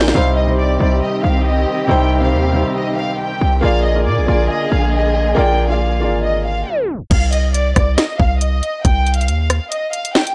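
Tense, dark half-time drill in which a floating, sul tasto violin section carries a high melody over clear grand piano and veiled, con sordino strings, while a punchy, heavy 808 bass sits up front and the knocking drill kit, after an opening fill, drops away until a tape stop at 6.7 seconds brings it back with sharp snare and hi-hats at 7.1 seconds, all through gritty cassette-toned studio reverb.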